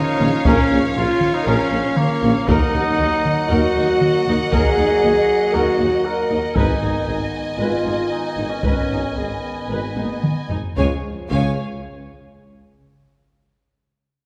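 Majestic and adventurous, this epic orchestral film score cue is cut from a longer piece and moves with an uneven pulse in 4/4. A lush, distant violin section carries the high melody while a second violin line sits just beneath it, supported in the background by expressive violas and a focused, close cello section. Mellow French horns and a bright, tight trombone section hold sustained chords behind the strings, as a vintage-toned solo trumpet punctuates with stabs. The low end is anchored by smooth double basses and a close-miked tuba, while a dry taiko ensemble struck with hard sticks drives the rhythm and plays a fill from 10.0 to 10.8 s. At 10.8 s the harmony moves from minor chords to a major resolution, and barely audible timpani with a round tone join the close. A wet scoring stage reverb, recorded in a church or concert hall, gives the whole orchestra a grand sense of space.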